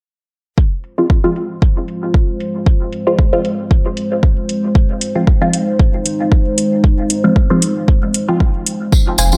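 A deep, tape-warm electronic kick drum sits up front from 0.6 seconds, anchoring this dark, hypnotic dub techno excerpt in 4/4 with a swung sixteenth feel. Overdriven metallic hi-hats, low-pass filtered and re-recorded in a large room, follow close behind. A muted, detuned dub chord stab built from sawtooth and square waves carries phaser, sidechain pumping and dub echo, with a filter sweep running across the section. Alongside them, a moody analog pad of detuned sawtooth, square and triangle waves with a sub octave holds sustained chords, its slow attack and long release colored by chorus, phaser and pumping. Near the close a jingly acoustic tambourine appears, and at 9.2 seconds a wave-folded, lo-fi pluck riff with chorus arrives alongside a smooth, clean pure sine sub bass. Light digital reverb lends the mix a subtle sense of space.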